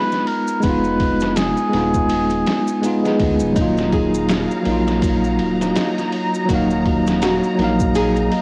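A swung, pitched-down sampler drum kit sets a slow 82 BPM trip hop groove in Eb minor, its thumpy kick, snare and ride overdriven and muffled as if re-recorded to cassette, while quiet, dry maracas sit in the background and a deep, rumbling detuned saw bass churns underneath. Up front, a bright, bell-like tine electric piano shimmers with harmonic tremolo, and a soft, veiled cup-muted trumpet plays a brief jazz-style line with dub echo that ends at 3.2 seconds. At 3.6 seconds a lush, distant string section and a fingerpicked nylon-string guitar with tape echo and audible finger squeak arrive, deepening the melancholic, smoky mood of this short home-cassette fragment.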